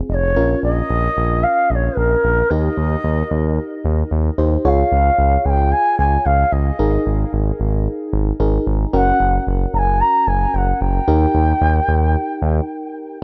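This wistful yet upbeat synth-pop excerpt is led by a mellow bansuri carrying the melody between Bb4 and Bb5, its pure bamboo tone shaded with vibrato and tongued notes, set up front yet touched with a distant tape echo. Beneath it, a smooth synth bass sits prominently in the low register, its nasal sawtooth-and-triangle sound sustained with a fast attack and vibrato. An FM electric piano supplies accompaniment from start to finish, its vintage, warbling tone carrying a noise layer and decaying after each struck note. At 112 BPM in a straight 4/4, the chords move through Bbm and Eb before shifting at 4.6 seconds into a passage of Db, Absus2, Gb and Eb. The dry, gritty recording sits in a small room, and a brief break arrives at 12.7 seconds after the bass drops out.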